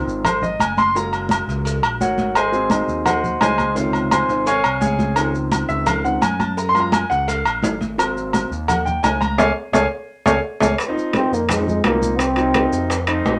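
A small room gives this short Afro-Cuban jazz passage a moderate, close-knit ambience, with an intimate concert grand piano up front showing deep bass, long sustain and a touch of audible action noise. The mood is sunny and lively at a brisk 171 BPM in straight 4/4, set in Db major and moving through chords such as Dbmaj7, Gb, Ab7 and Gbmaj7. The piano carries a solo stretch until 10.8 seconds over a smooth, dark synth bass that glides with portamento and vibrato, its saturated tone edged by a moving notch. Close, damped congas with a thick skin and grainy maracas sit near the listener, while ringing agogo bells and timbales add metallic shine, and tight cowbell and bongos sound distant in the background. A band accent and drum fill lead into a new section, where a mellow trombone takes the melody at 11.2 seconds, shadowed by a very quiet, breathy second trombone with scooped notes, as a closing piano fill over Cm7b5 rounds things off and the passage cuts away.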